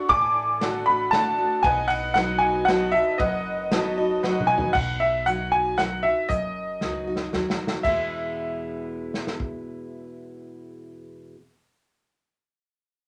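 A small, wet-sounding room wraps this short honky-tonk and classic country waltz in close, intimate ambience, with a heartfelt, sunny mood. Up front, a worn, slightly detuned upright piano carries the high melody with a brilliant edge and audible action noise, adding a rollicking honky-tonk fill at 3.7 seconds. Underneath, a full-bodied dreadnought steel-string guitar is picked with the occasional finger squeak, while a metallic, jangly tack piano adds vintage sparkle until it drops out at 4.7 seconds. A dark, thumpy gut-string upright bass is plucked low in the mix. An acoustic drum kit played with bundle sticks, with a punchy kick and a medium-tuned snare, adds short fills before falling away at 9.5 seconds, as the harmony moves from D to B and settles on E.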